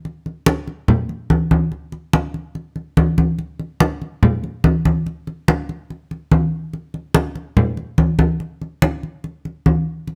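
A straight 4/4 pulse at 144 BPM drives this short Latin cut, taken from a longer piece. Congas carry the whole groove from 0.1 to 10.2 seconds, sitting up front in the mix. Their low tuning gives each stroke a ringing body, and the hard hands add a firm, punchy edge. Close, detailed microphones capture the acoustic drums in intimate focus, with a light reverb around them. The mood is warm and danceable.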